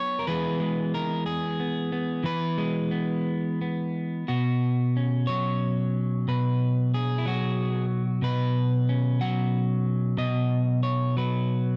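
A lone electric guitar, picked and placed up front, carries this short folk passage, its tone warm and slightly broken-up at the edge of distortion. The guitar plays alone for the full 11.8 seconds, ranging from B2 up to F#5. The feel is loose and rubato within a 6/8 metre, giving the playing a hopeful yet nostalgic air. An E chord sounds near the start, and at 4.3 seconds the music moves into a new section built on Bsus2. Light reverb surrounds the guitar within a dark overall production, and the clip is cut from a longer piece.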